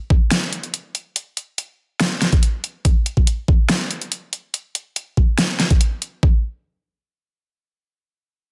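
A knocking, overdriven electronic kick opens this chaotic, menacing heavy wobble dubstep excerpt in a half-time 4/4 feel, joined at 0.3 seconds by an up-front, layered dubstep kit of hi-hat and huge, distorted snare, all held dry and crushed into a dense, heavily limited master before the drums drop out around 6.3 seconds.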